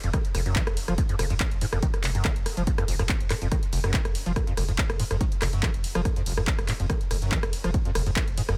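Relentless and intense, this driving peak-time techno excerpt runs at 142 BPM in F phrygian. A squelchy, gritty square-wave acid bass riff with a resonant filter sweep, saturation, ensemble chorus, delay and sidechain pumping sits over a deep, round sine sub bass on F1, which is overdriven, low-pass filtered and pumping too. Up front, a punchy analog drum machine supplies handclaps, hi-hat, ride cymbal and rim click, while a layered, heavy electronic kick enters at 0.1 seconds; both drum parts have a tape-warm small-room character, and the overall mix is dry.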